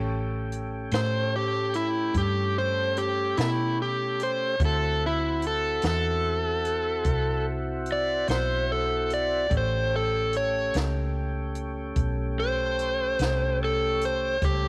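An overdriven slide guitar leads this slow blues excerpt, its dark, gritty tone sitting up front as it carries a solo melody from 0.9 seconds onward. The groove moves at 49 BPM in a straight 12/8, with a rollicking, swaggering mood over a chord progression that runs A9, D9 and back to A9. A hollow-body short-scale electric bass holds the low end with a round, dark sound and a touch of transformer saturation, placed prominently in the mix. A compact cocktail drum kit enters at 0.5 seconds with a dry, natural character, its high-tuned snare, tight kick and hi-hat keeping time. Underneath, a tonewheel organ sustains smooth, clean chords with audible key click and a slow rotary speaker. Light studio reverb gives the whole a modest sense of room, and the passage is cut from a longer piece.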